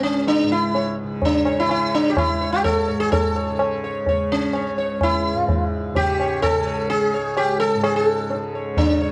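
A straight 4/4 pulse at 127 BPM comes from low-tuned tabla with a short ring, entering at 0.3 s in this brief, introspective fragment of Hindustani classical music in raga Todi on C#. Up front, a buzzing, plectrum-plucked sitar carries the meditative melody between C#4 and C#5, its sympathetic strings shimmering, while a softly plucked tanpura sustains a bright drone beneath from C#2 to C#3. The whole recording sits in a wet studio reverb and has the worn, warbling pitch drift of old cassette tape.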